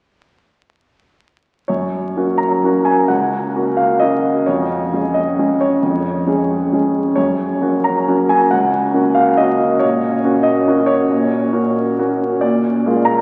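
Through the crackle of a very old 78 rpm record, a solo concert grand piano enters at 1.7 s with a graceful, playful classical waltz in F# major, moving in 3/4 at a rubato 125-146 BPM. The piano sounds clear and natural, placed up front with a deep bass, and spans C#2 to A#5 as the harmony moves from F# through C#/E# and F#/A# to an A#7 at 12.4 s. A wet cathedral reverb with a 6.0-second decay surrounds the playing until the fragment, cut from a longer piece, breaks off at 13.2 s.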